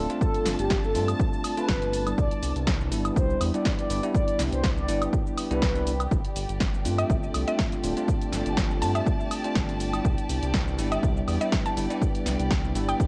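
Deep house at 122 BPM in C major, relaxed and unhurried, this excerpt sets a punchy, tape-warmed kick up front with a gritty analog drum machine of snare, hi-hat, cabasa and woodblock, under a round, deep bass and bell-like electric piano stabs that pump with sidechain, a moody detuned pad and distant bowed strings swaying between G9sus4 and Cmaj9, while a warbling horn-like synth lead carries the melody until 6.0 seconds before a woody mallet-like pluck with tape echo takes over from 7.0 seconds, all in a cassette-tinged digital ambience.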